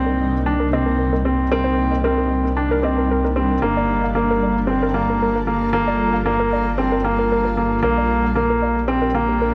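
From the first moment, a clear, up-front baby grand piano riff with digital delay leads this moving, melancholic electronica piece at 114 BPM in C dorian, over a blurred granular cloud pad with its own reverb, a warbling, lo-fi pluck arpeggio carrying chorus, digital delay and a filter sweep, and a deep, rumbling detuned saw bass, as the chords pass through Cm7, Gm7 and Bb6 in a dark production set in an echo-chamber reverb.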